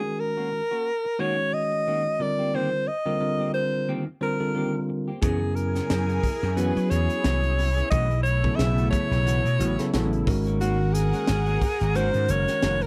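A clear, close-miked alto saxophone with vibrato and slapback echo carries a jazz-style solo over bell-like tine electric piano and dark semi-hollow guitar stabs with lush chorus in this bright, funky electric jazz fusion excerpt at 89 BPM, moving through suspended ninth chords until a growly, punchy slap bass and a crisp drum kit with a high-tuned snare kick in at 5.2 seconds, followed at 5.7 seconds by a thick, detuned sawtooth pad with chorus and phaser sitting in the background, all in a dry room.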